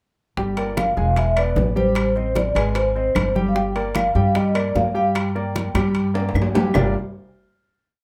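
Sultry and fiery, this short Afro-Cuban jazz piece in G minor moves at 150 BPM in a straight 4/4, all within a club reverb. A mellow vibraphone played with soft mallets carries a motif-based melody in period phrases, its metallic ring shaded by a medium motor vibrato until it stops at 6.3 seconds. Up front, a clear, intimate grand piano plays a montuno in octaves, its action noise audible, while a growly, thumpy upright bass with steel strings plucks a tumbao that anticipates the chords. Congas with slaps and open strokes, round low-tuned bongos in steady eighths with hand bell, and woody claves marking a two-bar time line sit in the background, as metal-shelled timbales ring out with a shell pattern and bell, entering at 0.6 seconds. The harmony moves through Gm7, E7, Am7b5 and Ab back to Gm7, a drum fill arrives from 5.8 seconds, and the piece closes on a final chord at 6.8 seconds.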